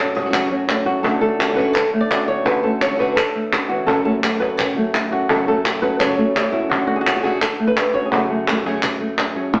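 Two fingerpicked flamenco guitars open this dramatic, intense flamenco excerpt at 0.0 seconds. The lead guitar sits up front and carries the melody, while the second guitar plays stabs beneath it, both with a warm acoustic tone. A snappy cajon with snares enters at 0.2 seconds, its vintage, band-limited sound struck with hard hands and kept in the background. Crisp palmas hand claps join at 0.3 seconds, with a small-room character of their own. The harmony moves between a minor chord and a major seventh, settling on an added-ninth minor chord near the end. The whole is heard from further back in a wet studio reverb with an AM-radio colour, in a short section cut from a longer piece.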